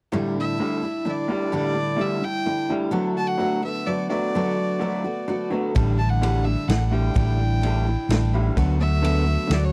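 A shimmering, octave-doubled twelve-string acoustic guitar and a slightly broken-up electric guitar riff with lush chorus open this nostalgic, open-road folk rock and heartland rock excerpt at 128 BPM in 3/4, joined by a nasal, earthy fiddle melody at 0.4 seconds, before a round, up-front hollow-body bass and a dark-cymbaled vintage drum kit with a punchy kick arrive at 5.8 seconds over A7sus4 and D6 in a dry, close 1970s-style studio sound.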